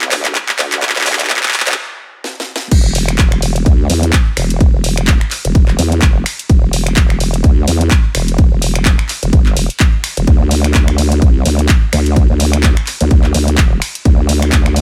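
Swung sixteenths at 127 BPM in 4/4 drive this gritty, swaggering bass house piece in E minor, where a nasal, saturated wobble bass with vowel-like formant sweeps, chorus, overdrive and sidechain pumping runs throughout beside a house kit of cracking snare, handclaps, finger snaps, hi-hat, ride and crash, and a punchy, tape-warm electronic kick that enters at 0.4 seconds; a short build-up of drum fills stops at 1.8 seconds, then a final fill leads into the drop at 2.7 seconds, everything sitting dry and up front.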